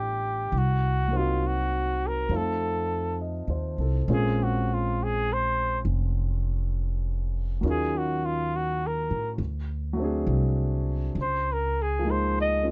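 Smoky and melancholic, this slow jazz ballad excerpt in Bb minor moves at 68 BPM with a gentle swing, its chords passing from G7 and Cm7b5 toward Bbm9 and a closing Db69. A clear, vintage-toned flugelhorn with vibrato carries the melody up front and takes a solo from 4.1 seconds, over an intimate grand piano whose long sustain and audible action noise lend a natural feel. A woody, thumpy pizzicato upright bass on gut strings anchors the low end up front, all captured dry, with little reverb.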